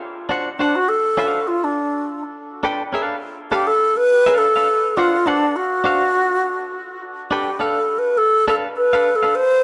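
A clean electric guitar opens the track at 0.3 s, its twangy, scooped tone recorded direct and compressed, picked chords bathed in spring reverb and sitting low in the mix as accompaniment. Just after, at 0.6 s, an airy alto flute takes the lead with a soft attack and expressive vibrato, placed up front and trailed by tape echo. This is a strutting, playful funk groove with a gentle sixteenth-note swing, moving back and forth between D7 and a rootless G9. The flute carries a solo through the whole passage, while the guitar comps beneath it until 9.3 s. The band plays live together in one room with a moderate studio reverb and a slightly rounded top end, and the piece is cut from a longer performance.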